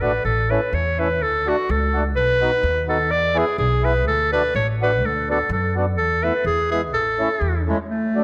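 Bouncy and festive, this brief cut from a longer alpine folk dance-band piece moves at 126 BPM in a brisk 2/4, with a faint swing on the eighth notes, in A major with tuning set to A4 = 442 Hz. A clear clarinet carries the melody up front as a solo voice, playing in a classical style with a smooth top end. Beneath it, a mellow accordion supplies accompaniment with a reedy, full and dark tone-chamber sound. The upright bass is plucked, woody and thumpy with steel strings, and sits forward in the mix until it drops out at 7.7 seconds, just before the clarinet and accordion finish at 8.2 seconds. The harmony travels from A through D, B, E and Bm/D to an Esus4 that settles on E at 6.4 seconds before returning home to A at 6.9 seconds. A moderate concert hall reverb gives the ensemble a spacious setting.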